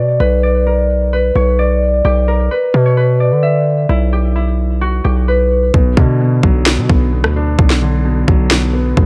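A half-time trap groove at 130 BPM in B harmonic minor sets a menacing, brooding mood, with a distorted 808-style bass pushing heavy, aggressive sine tones with a noise layer from the start. A ringing, fingerpicked concert harp carries the melody through low-pass filtering and tape echo until 7.4 seconds, moving over Bmmaj7 and E5/B chords. At 5.7 seconds a trap drum kit arrives up front with a hard-clipped kick, sharp snare and rim click while the hi-hats stay muted, joined by a soft, felt-muted upright piano whose mellow, intimate tone carries audible action noise, all in a small room with light reverb in this cut from a longer piece.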